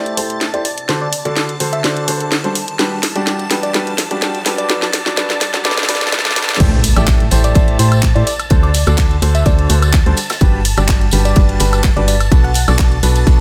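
Bittersweet and energetic, this piano house excerpt runs at 126 BPM in A dorian, opening with a build-up where a clear, woody upright piano riff moves through a filter sweep under shimmering string-machine violins, a round FM synth lead with chorus and tape echo, a house kit of cracking snare, handclaps, hi-hat, woodblock and crash, and a very quiet electronic riser. The drop arrives at 6.6 seconds, marked by a faint impact, as a punchy electronic kick, a hollow, dark organ-like FM bass and a saturated tambourine enter, along with a very quiet airy kit of ride cymbal and snare, while the bass, strings and piano all carry sidechain pumping. The chords cycle through Am7, D7, Gmaj7 and Bm7 in a small room with light reverb.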